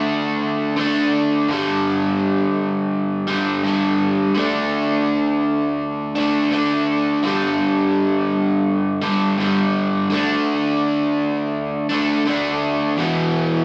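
A straight 4/4 rock excerpt at 84 BPM sets a cinematic, brooding mood as a single bright, overdriven, double-tracked electric guitar, picked and up front with digital delay, moves between D5 and G5 power chords before landing on E5 at 13.0 seconds, all inside a wet large-studio reverb that captures the live sound of a band playing together in one room.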